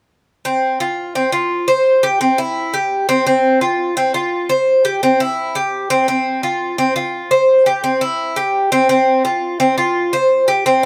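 A Cuban tres enters at 0.5 s and carries this short Latin passage alone, cut from a longer piece and running to 10.9 s. The tune moves at a brisk 170 BPM in a straight 4/4, with a danceable, sunny mood. The acoustic tres is picked on its paired strings, some of them octave-doubled, giving a metallic ring with a warm body underneath. Its line sits between C4 and C5 and is placed up front in the sound. Close, detailed microphones capture the instrument, and a light reverb adds a touch of space around it.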